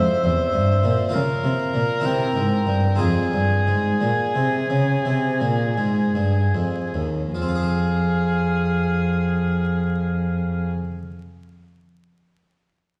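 This baroque-style sonata movement with continuo, cut from a longer piece, moves in a grave, introspective 12/8 in F minor at 49-68 BPM counted in dotted quarters, slowing between 0.5 and 7.3 seconds as the chords pass through C, Bb minor and C7 to F minor. An oboe with light vibrato sings the melody over a bowed violin second line with soft attacks, portamento and expressive vibrato, while an up-front cello, equally expressive with its own sliding portamento, anchors the bass and a brilliant, plucked harpsichord with octave strings fills in the accompaniment, ringing on alone until 11.0 seconds. The sound is heard from further back in a wet recital hall with a 1.7-second reverb, and a layer of vinyl crackle adds a worn patina.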